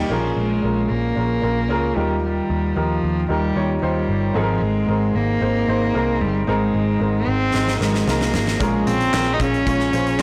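A rich, bowed cello carries the melody from the first moment, its smooth vibrato up front over an open baby grand piano whose chords ring with long sustain, while a muted electric bass sits dark and round beneath, thickened by tube saturation. A fingerpicked steel-string acoustic guitar touches in at the very start, then drops out until it returns with its riff at 8.6 seconds, tucked in the background. This anthemic, hopeful piano-driven pop moves at 113 BPM in a straight 4/4 in Ab major, cycling through Bbm7, Ebadd9 and Abadd9. At 7.5 seconds a huge arena drum kit arrives with a fill, bringing a fat snare, a punchy kick, hi-hat and handclaps in a big room sound. Light studio reverb colours the recording, and the whole mix is blown-out and overdriven, giving this short section cut from a longer piece a loud, saturated edge.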